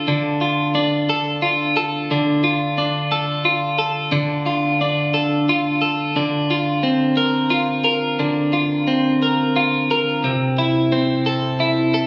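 A twelve-string electric guitar plays alone from the start, clean, picked and compressed, sitting up front with a warm tone as it moves through D minor, Bbadd9 over D and C6 chords in a slow 6/8 pop setting at 59 BPM. The mood is dramatic and melancholic, and the sound carries the bloom of a club reverb along with the character of a phone recording made in the room. This short excerpt runs to 12.1 seconds, cut from a longer piece.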